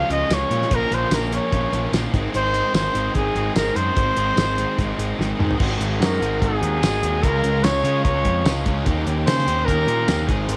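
A straight 4/4 pulse at 147 BPM drives this upbeat, jangly indie rock clip, where a cloth-damped, thuddy drum kit with a fat snare and dark cymbals sits up front beside a punchy fuzz electric bass, two bright picked guitars play riffs (one crunchy and overdriven with subtle chorus, the other high-gain and distorted in the background), and a distant-sounding trumpet with vibrato and analog delay carries the classical-style melody over chords moving from Db through Bbm and Ab7, captured dry at home on cassette, with a drum fill at 5.2 seconds leading into the second section.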